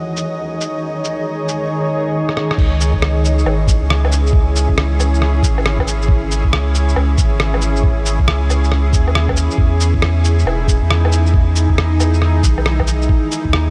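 Future garage at 137 BPM with a swung 16th feel in C# minor, this wistful, melancholic excerpt opens on a cloudy granular pad holding sustained chords that pump against the sidechain, paired briefly with a bright, flickering grainy texture until 1.7 s, while a muffled, tape-warm lo-fi sampler kit of cabasa, shaker, rim click, woodblock and crash cymbal ticks in small-room ambience and rolls a fill into 2.6 s, where a deep, round sine sub bass sits up front beside a thumpy electronic kick, all washed in a dreamy, reverb-soaked haze as the harmony moves from G#sus4/D# to C#m, Emaj7 and back to G#sus4.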